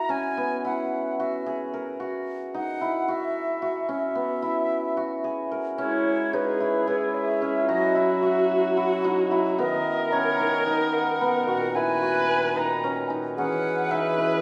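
Restless and hypnotic, this contemporary chamber piece in 7/8, cut from a longer work, opens with a pure, crisp-attacked wooden flute carrying the melody over up-front, shimmering hammered dulcimer arpeggios. At 5.8 seconds a woody, bowed viola, played sul tasto with vibrato, adds a second line, while a reedy, breathing, vintage hand-pumped harmonium sustains chords beneath. From 6.1 seconds a very quiet, bell-like celesta with soft felt hammers lends delicate texture, and the whole is set in a wet recital hall reverb over small room ambience.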